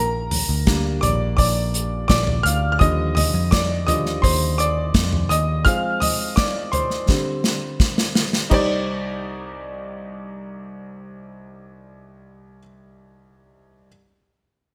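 A clear, up-front concert grand piano with deep bass and short sustain leads this driving, bittersweet piano-driven pop excerpt at 84 BPM in C minor, taking a solo over a dark, round, foam-muted electric bass that stops at 5.6 seconds and an airy acoustic drum kit with gated reverb, bundle sticks, dark cymbals and a tight kick, whose fill from 7.1 seconds leads into a Cmadd9 chord just before the drums end at 8.7 seconds, all in a bright 1980s-style digital production with light studio reverb.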